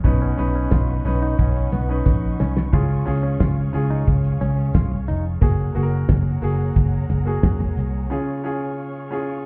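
Heard muffled through a wall with club reverb, this short, anthemic and hopeful piano-driven pop excerpt in Db major moves at 89 BPM, featuring a clear, polished concert grand over a foam-muted, round fingered bass and a damped 70s drum kit with a fat snare and tight kick, which plays a fill from 2.1 to 2.7 seconds. A bright, twangy direct-recorded clean guitar picks a compressed riff until 5.2 seconds, alongside a very quiet, jingly tambourine. Lush bowed strings hold dark, expressive chords in the background as the harmony moves from Cbadd9 through Db and Gbadd9 back to Db.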